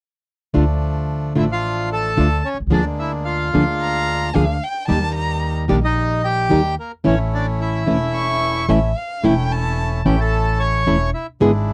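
A fingerpicked, full-bodied classical nylon-string guitar opens this tense, melancholic tango excerpt at 0.5 s, soon joined by bright bandoneon stabs and a woody, growly pizzicato upright bass, with a dark, reedy bandoneon melody arriving at 1.4 s and a single warm, boxy violin adding an expressive second line with vibrato and portamento from 3.8 s, all moving in a rubato 110 BPM over Dm, Bb7/D, Eb and A in a dry, close 1970s-style studio sound.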